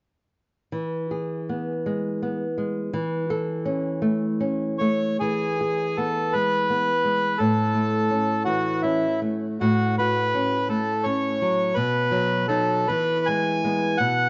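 Lightly reverberant and dulled at the top, this serene fragment of a romantic duo opens with a dark, close, fingerpicked nylon-string guitar, its finger squeaks audible, playing alone from 0.7 seconds in a loose, rubato 6/8, before an up-front, reedy, vintage-toned bandoneon takes up the melody at 4.8 seconds over the guitar's accompaniment.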